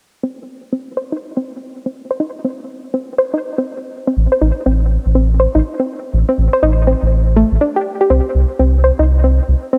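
A soft, nasal pluck spins chorused arpeggios with dub echo through a filter sweep until 8.1 seconds, joined at 4.2 seconds by a deep, dark analog bass on an A minor chord, in this melancholic, cerebral IDM fragment at 122 BPM with a 62% swing on the sixteenths, light reverb, and a cut from a longer piece.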